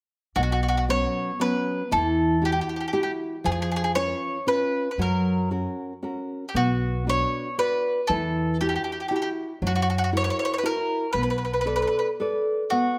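At 0.4 seconds a bowl-back mandolin, a nylon-string guitar and an upright bass enter together in this romantic, wistful Italian serenade, a short section cut from a longer piece in B minor at 116 BPM in a straight 3/4. Sitting up front, the picked mandolin carries the melody in a narrow span from F#4 to C#5, its double strings giving it a warm voice. Also up front, the fingerpicked classical guitar supplies bright accompaniment, moving through Bsus2, Emadd9, C#7/E#, F#, Bm, Emadd9, F#7 and a closing Bm7. Beneath them the pizzicato bass on steel strings sounds woody, dark, growly and thumpy, holding low notes between B1 and F#2 before dropping out at 11.8 seconds while the mandolin and guitar carry on to 13.0 seconds. A moderate recital hall reverb surrounds the trio, and the instruments are tuned to A4 = 437 Hz.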